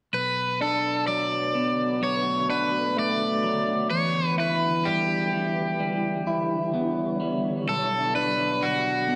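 Cinematic and melancholic, this short post-rock passage, cut from a longer piece, moves at a slow 64 BPM in a straight 4/4 in B minor. From the opening moment, a bright, overdriven lead from a cranked stack guitar carries the melody up front between F#4 and D5, colored by slapback echo and digital delay. Alongside it, an electric guitar through a small old amp picks arpeggios in the lower register from B1 to E4, its tone slightly broken-up and compressed, with spring reverb and its own digital delay. At 1.2 seconds a shimmering, ethereal pad enters in the background, holding detuned, octave-up sustained chords with a slow attack and a granular texture, treated with chorus, phaser and built-in reverb. The harmony shifts from Bm7 to Em7 at 3.9 seconds and returns to Bm7 at 7.7 seconds, all set in a lush hall reverb that gives the passage a big arena sound.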